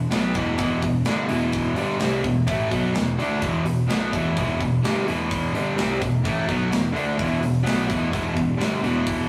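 A bright, overdriven electric guitar anchors this heavy, driving hard rock excerpt at 127 BPM in E minor, riffing up front on a single Em chord alongside a warm hollow-body guitar in the background, a growly, punchy picked bass, and a tight, airy acoustic drum kit of hi-hat, kick and snare, all caught in the rough ambience of a small stone rehearsal room.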